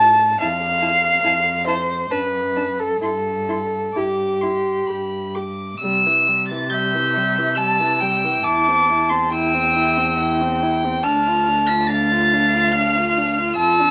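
In a rubato 3/4 at 64-72 BPM, this tender, lyrical slow romantic movement for string quartet in C major, tuned to A4 = 436 Hz and cut from a longer piece, has a high, floating violin melody with a soft attack sitting up front, over a woody second violin line. A dark viola with vibrato and a smooth top and a sul tasto cello bass complete the bowed texture, all four playing throughout. The harmony moves from Fmaj7 through C/G to G before a new section begins at 5.8 s on C and reaches Dm, and moderate studio reverb and vinyl crackle give the sound a softly aged cast.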